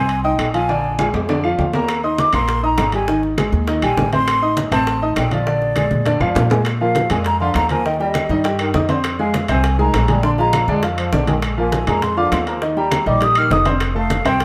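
A mellow, hollow silver concert flute carries the melody of this festive, sunny salsa at 201 BPM in 4/4, over a clear, polished upright piano and a dark, thumpy pizzicato upright bass up front, with ringing, distant timbales, low-tuned congas and woody claves in the background, tight high-tuned bongos joining at 1.9 s, and a punchy, smooth-topped trombone section adding a second line from 6.8 s, all under light reverb.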